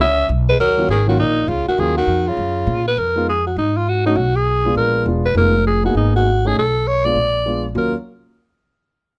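Smoky and moody, this swinging jazz excerpt in Eb minor at 201 BPM puts a raspy, growling alto saxophone with vibrato and scooped notes up front on the melody over a woody pizzicato upright bass, while a clear tenor saxophone adds a second line until 2.9 s and a dark, mellow baby grand piano with long sustain enters at 0.8 s to accompany, all captured with close, detailed microphones and light reverb.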